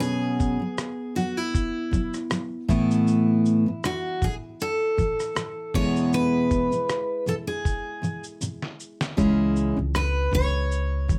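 A relaxed 79 BPM groove in 4/4 with a light sixteenth-note swing sets up this sunny, easy-going acoustic pop passage in E major, its gritty, compressed sampler-style drums giving a thumpy kick, fat snare, rim click and shaker, with a fill at 8.4 seconds. Two picked steel-string acoustic guitars sit up front: a warm dreadnought carries the melody while a bright, fresh-stringed jumbo picks the accompaniment through Bsus2, Asus2 and E. A woody pizzicato upright bass joins at 9.2 seconds as the harmony moves to C#m, all in a moderate small-room reverb, in a section cut from a longer piece.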